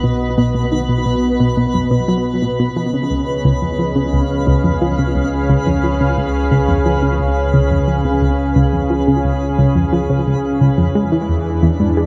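From the first moment, a cosmic, luminous slice of sequencer-driven space music opens with every layer already sounding together in a steady, straight 4/4. A lush, thick unison pad sits up front with sustained chords, its detuned sawtooth and square tones bright and full-bodied, coloured by chorus and a slow attack with long release. Beneath it, a round analog pluck plays a low riff with a fast attack and short decay, its wave-folded, detuned character thickened by chorus and tape echo, while a filter sweep moves across the synth arpeggio throughout. A deep sine sub bass holds a mellow foundation, and a faint granular texture adds twinkling, sparkling, octave-up shimmer through its own built-in reverb. The harmony moves from B to C# at 2.8 seconds and lands on E7 at 10.9 seconds, all set inside a huge ambient reverb with a long, cavernous tail.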